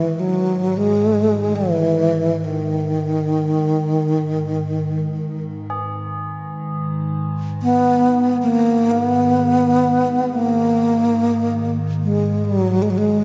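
World meditative music, spacious and unhurried, in which a breathy, up-front bass flute carries an unsteady, vibrato-laced melody through diffuse ambient delay over a full-bodied, morphing wavetable pad drone with phaser, a slow attack and a long, sustained release, while soft, solemn tubular bells ring with a mellow, metallic glow, all of it steeped in a lush hall reverb across this 13.2-second passage cut from a longer piece.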